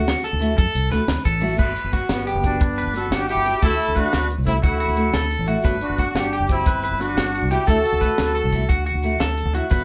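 Sunny and danceable, this 12/8 highlife guitar band passage in G major moves at 118 BPM with a straight feel, built on a picked steel-string acoustic guitar's concert-toned accompaniment, twangy, slightly broken-up electric guitar arpeggios, a dark, round, foam-muted fingered electric bass and a dry, up-front funk kit with bright cymbals, a high-tuned snare and a tight kick, the kit playing a fill at 1.4 seconds, before a warm, loose horn section with light vibrato enters at 2.1 seconds to carry a jazz-style melody up front over Dadd9 and Gmaj7 chords, all captured live in one room with moderate studio reverb.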